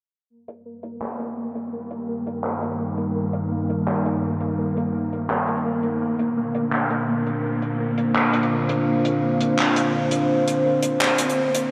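A dark, detuned sawtooth pad with a sub octave sits up front in this heavy, tense half-time drum and bass excerpt, holding slow-attack chords under a filter sweep as the harmony moves from Cm to Bbadd9 at 6.0 s. A bright, pulsing gated texture with chorus shimmers beneath it, while a dry acoustic reggae kit with handclaps and hi-hat enters at 0.5 s in a small room ambience. The whole dreamy mix is soaked in huge reverb and softened by a low-pass filter, and an electronic swell rises in the background from 11.1 s.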